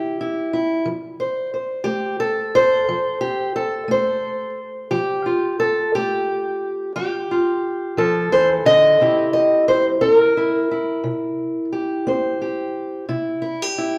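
A church-like recital hall wraps this recording in a wet, lingering reverb that trails behind every note. This fourteen-second fragment of a longer acoustic country blues piece features a single fingerpicked steel-string parlour guitar, placed up front with a dark, boxy tone. The mood is rollicking yet soulful, rolling along in a straight 12/8 feel, with the instrument tuned a touch low to A4 = 438 Hz. The harmony opens on a rootless C, moves to F at 0.9 seconds and settles there at length before returning to C at 9.0 seconds. The picking spans from C3 up to Eb5, carrying the lone guitar through both its low and high registers within the spacious room.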